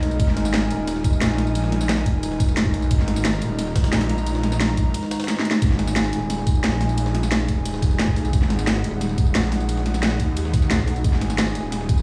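A thick, detuned sawtooth bass sits up front in this tense, mechanical stretch of dark technical drum and bass at 177 BPM, its saturated, chorused tone pumping against the beat while a moody, nasal analog pad holds sustained chords beneath it with slow attack and long release. A layered kit of cracking snare, bright hats and tambourine drives from the start, joined at 0.2 seconds by an overdriven electronic kick with a knocking punch, while a very quiet, gritty, pitched-up jungle sampler kit with a high-tuned snare adds texture underneath. A drum fill lands at 5.3 seconds, and the whole piece sounds as if played through a big sound system in a bare stone room.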